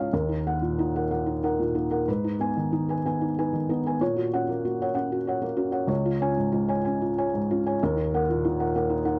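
A felt-muted upright piano plays alone in this brief, intimate excerpt of neoclassical minimalist music, its thick-felted, mellow tone sitting up front in a dry, close 1970s-style studio sound as it moves with wistful rubato at 63 BPM in 6/8 through D#m, G#m, F#/A#, and C# before returning to D#m at 7.8 seconds, spanning C#2 to G#5 with the tuning set at A4 = 441 Hz.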